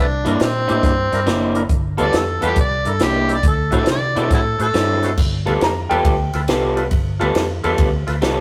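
A swung shuffle in four drives this short electric blues cut, carried by a compact cocktail drum kit with a punchy kick, a high-tuned snare, and dark crash, ride and hi-hat cymbals, all played dry. An overdriven, amplified harmonica sits up front with a swaggering, gritty jazz-style solo full of tongue slaps and scooped notes until 5.2 s. A vintage fingered electric bass underpins it with a round, foam-muted, amped tone, while an electric guitar through a small old amp picks a slightly broken-up, lo-fi riff. Deep in the background, a tonewheel organ adds a thick, lightly overdriven accompaniment with vibrato, key click and a slow rotary speaker, moving through C9, G9 and D9 harmony. A clear, woody upright piano steps forward at 5.6 s for a brief, intimate solo phrase with short sustain and audible action noise. The whole band sits in a moderate stone room, with the raw feel of a rehearsal-room recording and a touch of tube saturation.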